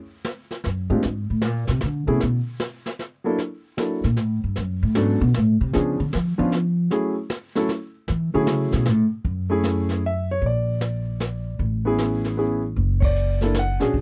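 The sound is dry and close, with little reverb, in the manner of a 1970s studio session, and the three players sit up front. This is a short cut from a longer jazz piano trio piece in a swinging, smoky triple-metre groove. A brush drum kit played in a small room sets the pulse with a boomy kick, a medium-tuned snare and dark cymbals on hi-hat and ride. A woody, growly upright bass with steel strings is plucked and takes the solo through the first section, until 9.3 seconds. A warm vintage grand piano carries the melody with a smooth tone, deep low end and short sustain. The harmony moves through rich minor and altered chords, and the band hits a shared accent at 13.0 seconds.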